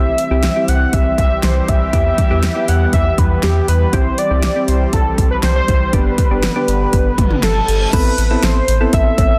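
Dense, heavily limited and lightly reverberant in a digital ambience, this cool, nocturnal synth-pop excerpt sets a bold, retro octave-doubled sawtooth lead with chorus and delay over gentle electric-piano-like synth keys, an airy, detuned pad that stops at 7.9 seconds, a round, deep analog bass and an up-front, punchy pop drum kit with fat snare, metallic hats and cowbell, as a brief reverse cymbal rises into the Amadd9 chord that opens the closing section at 7.9 seconds.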